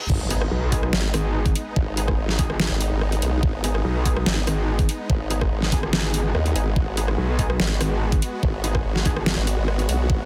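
A half-time 4/4 groove at 144 BPM drives this heavy, menacing wobble dubstep drop in G# minor, cut from a longer piece. An overdriven, knocking electronic kick and an up-front dubstep kit with a deep snare, bright hats, rim clicks, toms and crash cymbal hit hard, while a very quiet reverse cymbal and impact open the drop until 1.8 s. Two up-front wobble basses carry the weight: a chorused, formant-filtered sawtooth one and a distorted, aggressive metallic FM one from 0.5 s, under huge, lush supersaw chords pumping from the sidechain and a punchy, nasal orchestra-hit-like stab with dub echo sitting in the background, all in a dry, dense, heavily limited modern master.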